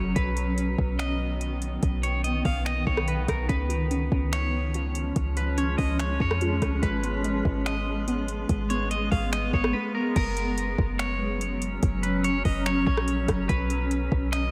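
Atmospheric cloud-rap in a floating, blissful half-time feel, this excerpt from a longer piece is soaked in a cathedral-like reverb that makes the whole mix dreamy. A bright, cloudy granular pad carries sustained chords with sidechain pumping, while a deep, boomy 808-style bass sits up front, a clean picked electric guitar plays the melody through delay, and a smooth R&B drum kit of soft kick, metallic hats, finger snaps, rim clicks and crash adds an overdriven edge. From 3.5 to 10.2 seconds a very quiet, warbling lo-fi pluck with chorus weaves arpeggios beneath the guitar, and as it drops out at 10.2 seconds the harmony shifts into a new section.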